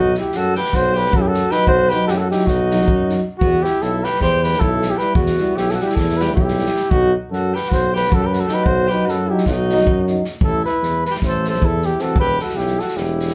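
Straight eighths at 309 BPM in 9/8 drive this restless, bittersweet Balkan brass band fragment in E harmonic minor, with an acoustic drum kit played with bundle sticks: a punchy kick and medium-tuned snare that sit up front yet sound roomy. A mellow flugelhorn carries the melody up front with a slapback echo, over a vibrato-tinged alto saxophone on the second line and a warm tuba bass. A distant French horn and a vintage-toned euphonium add accompaniment from 1.5 to 12.2 seconds as the harmony moves through B, Em, B and Am, all heard from further back in a studio room with wet reverb.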